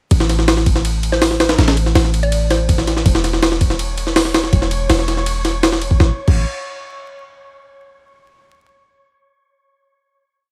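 A gritty, overdriven jungle breakbeat leads this frenetic, atmospheric drum and bass piece: a compressed, pitched-up kit, heavily chopped, with a thumpy kick, high-tuned snare, hi-hat, ride and crash sitting up front over a deep, boomy 808-style bass of long gliding notes. From 1.1 seconds a woody, mellow FM mallet-like pluck with chorus and dub echo offers short phrases in the background, and at 3.6 seconds a dark, breathy wind-like tone holds a high note in its own reverb. Vinyl crackle runs through the otherwise dry sound, and the drop gives way to a closing moment at 6.0 seconds.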